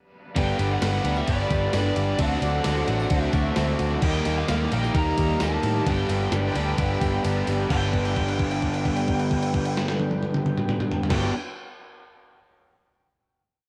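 A lush, chorused overdriven electric guitar riff opens this short, hazy and dreamy shoegaze and dream pop rock piece, joined at once by two crunchy overdriven guitars (one bright and double-tracked, the other touched with reverse reverb), faint lo-fi arpeggios from a guitar through a small old amp, a shimmering retro pulse-width pad, a distorted bluesy lead melody with analog delay in the background, a dark, round, punchy foam-muted bass up front, a thumpy gated 80s drum machine with a big gated-reverb snare, and a very quiet jingly tambourine, until the kick and snare drop out at 7.2 seconds and the piece settles on a final held Gmaj7 chord from 7.7 seconds.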